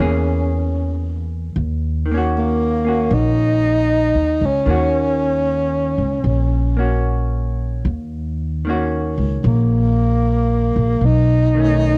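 A melancholic, smoky jazz ballad in Eb minor at 76 BPM with a swung 4/4 feel, cut from a longer piece and heard through the soft grain of a home cassette recording with light reverb and studio ambience. Up front, a breathy tenor saxophone carries the melody in a whispered, intimate subtone, with vibrato, scooped notes and soft attacks, while a dark, clean hollow-body electric guitar plays picked accompaniment that also carries the cassette tape character. Beneath them a woody, thumpy pizzicato upright bass sits up front, and the harmony moves from E to a long Ebm7 at 1.6 seconds before turning to B9 at 11.0 seconds.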